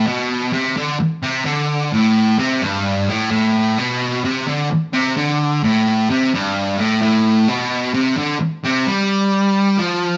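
A straight 4/4 rock groove drives this raw, swaggering fragment cut from a longer piece, with a fuzz guitar carrying everything alone for its full 10.2 seconds. The picked, double-tracked guitar sits up front, bright and distorted, working between G2 and G3. A moderate stone-room reverb and a band-in-one-room sound with the top end rolled off give it a live, gritty feel.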